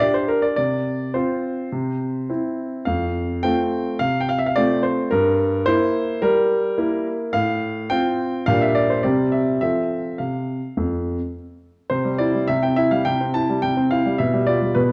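Cheerful and graceful, this brief excerpt from a longer classical-period piano sonatina moves at 106 BPM in a straight 4/4, set in F major. A solo grand piano carries the whole piece, its tone clear, smooth and vintage, placed up front and ranging from F2 up to A5. The harmony moves through simple cadential chords such as C, F, Gm and a diminished passing chord before the music shifts toward C major at 11.9 s, where a new section begins. That section leans on a G7 chord near 14.2 s just before the excerpt closes at 14.9 s. A moderate recital hall reverb with a 1.4-second decay surrounds the instrument, and the production overall has a dark, warm character.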